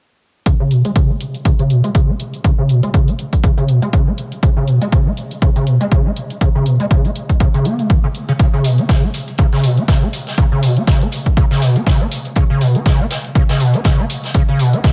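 Acid house at 121 BPM with a swung sixteenth feel, trippy and hypnotic, cut from a longer piece and bathed in a dreamy plate reverb. A squelchy, gritty square-wave acid bass riff sits up front with tube saturation, chorus, tape color and delay, its resonant filter sweeping throughout, while a punchy, overdriven analog kick and a dry, overdriven electronic hi-hat drive the groove. At 8.4 seconds a vintage acoustic kit joins with a natural small-room snare and hi-hat, warm with a rolled-off top, high-pass filtered, and the hats pumping.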